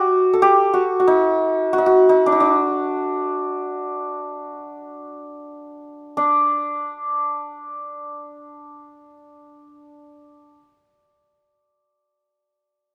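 Persian modal ensemble music in free time in D dastgah homayun, tuned to A4 = 441 Hz, this passionate, stately fragment of a longer piece features a solo acoustic santur, hammered, bright and shimmering, ringing up front between D4 and A4, that slows from 1.4 to 6.2 s before moving into a new section and falls silent at 10.5 s, captured with close, detailed microphones and light reverb.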